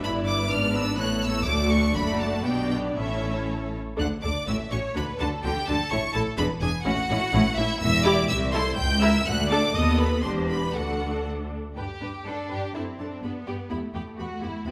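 Spirited and graceful, this quick classical-period movement for string orchestra unfolds in a rubato 2/4 and is cut from a longer piece. A clear, even violin section sits up front with the high melody above a focused, more distant second violin line and an expressive viola accompaniment, while a lush cello section and a double bass section with a smooth top anchor the bass, every section bowed with vibrato. A moderate scoring-stage reverb surrounds the ensemble, and the harmony shifts to a new home at 7.8 s.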